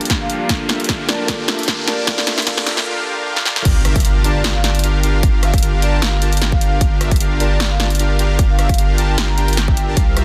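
A dense, heavily limited modern mix with light digital ambience opens on a build-up in this emotional, lush future bass excerpt at 152 BPM in G minor, riding a half-time feel with a gentle swing on the sixteenths over a Gm7 chord. Through the first 3.7 seconds a clean tine electric piano heard through a combo amp plays accompaniment with sidechain pumping and delay, while a very quiet, airy, breathy pad holds sustained chords under a chorus sheen, and a riser climbs in the background alongside a drum fill. A smooth, detuned unison supersaw carries the riff with pumping, delay and a filter sweep, and a metallic, ringing vibraphone with medium mallets and motor vibrato sits in the background on the melody, also swept by a filter during the build. At 3.7 seconds the drop lands with an impact, and a deep, thick, saturated sub bass enters up front, pumping against a punchy, layered electronic kick. 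The big-room dance kit drives the drop with an up-front punchy snare, rim clicks, hi-hats and crash cymbals, as the supersaw riff continues to the end and the vibraphone line carries on until just before it.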